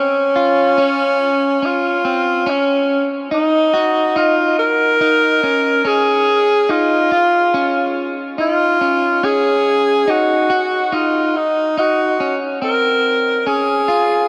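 Blissful and floating, this dream pop excerpt drifts at 71 BPM in a straight 4/4, set in Db major. A tenor saxophone with a warm tone carries the melody between Db4 and Bb4, its light vibrato and pop-style phrasing sounding distant and roomy while still up front, with delay trailing its notes. Beneath it, a clean, picked electric guitar plays scooped arpeggios from C4 to Gb4, softened by subtle chorus and delay. Both parts sound together for the whole 14.3 seconds, moving through Dbmaj7, Dbsus2, Dbadd9 and Gb5 before settling back on Dbmaj7 at 12.6 seconds. A huge ambient reverb with a 4.8-second decay bathes the dark production in a hazy glow.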